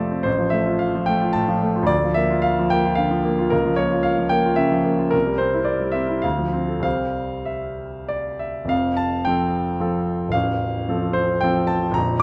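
A brilliant concert grand piano, deep in the bass and up front, carries this romantic classical character piece alone, moving in a rubato 3/4 between 94 and 114 BPM in F major, with a bittersweet, stormy mood. Its harmony passes from F/A through Bb/D to a darkening Bbm/Db, then C and Dm7 before a new section opens on F at 8.7 seconds. A large, wet studio reverb surrounds this short cut from a longer work, which runs to 12.2 seconds.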